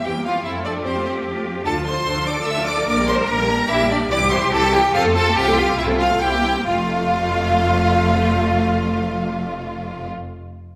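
A wet recital hall reverb surrounds this string orchestra, lending the stormy, dramatic music a spacious glow. Taken from a longer piece, it is a quick classical-period movement in 3/4 and F major, pitched at A4 = 444 Hz, moving at 131-150 BPM with a rubato feel that slows from 3.5 to 6.7 seconds. A close, rich violin section carries the expressive melody with vibrato, while an intense, up-front second violin line rides above it. Beneath them, a distant, lush viola section supplies smooth, even accompaniment, a bright cello section and a focused double bass section anchor the bass, and all five sections bow with vibrato. The harmony moves from F through Dm, Gm/Bb and C to a C7 that resolves back to F as the second section begins at 6.7 seconds.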